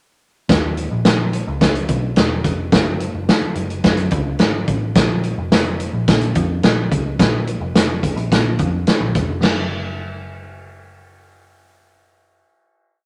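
A swinging big-band drum kit with a punchy kick, up front in a big natural room, drives this short, uplifting 1960s-style soul piece at 107 BPM with the snare on all four beats, while a dark, round, foam-muted electric bass plays a melodic, syncopated line with chromatic approach notes, carrying on as a final chord rings out from 9.4 seconds.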